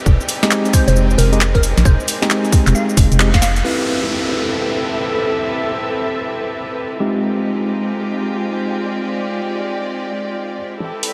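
A rich, intimate violin section opens this soulful, skippy two-step garage excerpt with sustained bowed chords, pumping against the sidechain. At 0.1 s the groove arrives: a tight, tape-warm layered kick, a punchy analog drum machine with an overdriven snare, handclaps, hi-hat and shaker, and a hollow, organ-like FM bass that sits dark and up front. A worn, slightly out-of-tune tine electric piano adds lightly overdriven stabs through a filter sweep and delay, while a crystalline, detuned wavetable pluck carries a melody in the background, coloured with chorus. At 3.6 s the beat and bass fall away, a downlifter and riser take over, and a muted, veiled string section joins the violins from a distance. The dreamy mix is soaked in long ambient reverb, with the bass and drums returning only for a brief moment at the very end.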